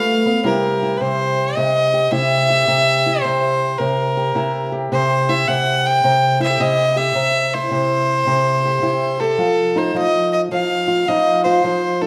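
The recording sits in a moderate recital hall reverb, as if captured in a church or concert hall, lending a roomy glow around two close, up-front players. This is a short cut from a longer acoustic country blues duo, laid-back yet swaggering, with a lilting swing in 4/4. A single bowed fiddle carries the melody with a rich, nasal, earthy voice. Beneath it, an old ladder-braced acoustic guitar is fingerpicked on old strings, dark and woody in tone. Both parts play throughout, from 0.0 to 12.1 seconds, resting on a C chord before moving to F7 at 9.4 seconds.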